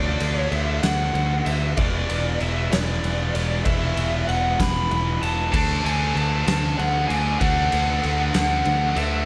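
A lead guitar through a small cranked amp opens this restless, bittersweet slice of quiet-loud alternative rock, carrying the melody with a dark, lo-fi overdriven tone and slapback echo. Alongside it from the very start, an overdriven electric guitar plays a picked riff with its own slapback, while a punchy, growly bass sits up front with a direct, bright attack. An oversized low-tuned drum kit enters at 0.2 seconds with a boomy kick, fat snare, dark crash and ride cymbals, and a gritty, saturated, pumping room sound. The music moves at 64 BPM in a straight 6/8, shifting from D to E5 and back to D. At 5.5 seconds a scooped, high-gain distorted guitar joins in the background with a second riff, thickening the arrangement under a lush hall reverb that gives the whole a big arena feel in this short excerpt from a longer piece.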